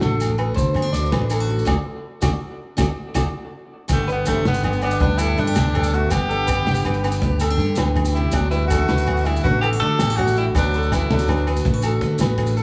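The recording has a light reverb and small-room ambience, giving this sunny, carefree highlife guitar band cut a close, lively feel. At 108 BPM in a straight 12/8 in G major, a round, punchy fingered electric bass anchors the groove. A dark, smooth soul drum kit with a punchy kick sits in the background next to low-tuned, thick-skinned congas, ringing agogo bells and grainy, distant maracas. A bright, full-bodied jumbo steel-string acoustic guitar is picked in the background for accompaniment, while a compressed, slightly broken-up electric guitar plays arpeggios through tape echo. After a band accent and a drum fill, an edgy tenor saxophone with vibrato takes the melody at 3.9 seconds, with tape echo, as the harmony moves from D to G. A roomy trombone with vibrato carries a second line behind it, both horns finishing at 11.5 seconds in this clip from a longer piece.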